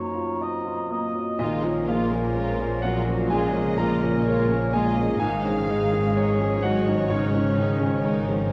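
A clear baby grand piano sits up front with a long sustain, anchoring this short, sorrowful cinematic fragment in a slow, rubato 4/4 full of longing. At the opening, a dark cor anglais, a hollow, pure silver flute and a close-miked clarinet share secondary lines over a very quiet fingerpicked concert harp. The flute and cor anglais fall away within the first 1.4 seconds, while the clarinet's solo line carries on to the end. At 1.4 seconds the muted strings arrive: con sordino violin sections take the veiled melody and a second line, with viola, cello and double bass sections filling in the harmony and the low end, and a mellow French horn section holds chords in the background. The harmony moves from Ebmadd9/Gb to Bbm7 and then Dbadd9/Ab at 5.2 seconds, all bathed in a moderate scoring-stage reverb with a dark production.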